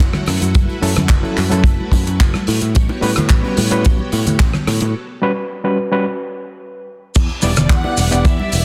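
Sleek and sensual, this nu-disco excerpt at 109 BPM rides a tight, up-front kick, a dry damped 70s kit with dark cymbals, handclaps and shaker, bright tambourine, bongos and congas, and a round, dark picked bass under chords moving from F#m7 to A13. A barky, gritty reed electric piano enters at 0.8 seconds with spring reverb and slapback echo, while a lush sawtooth string machine pumps in the background. After a break from 5.0 seconds, the drop at 7.2 seconds lands on Em7, and a smooth bowed violin section with vibrato and tape echo takes the melody from 7.4 seconds, all under a dense, heavily limited modern master.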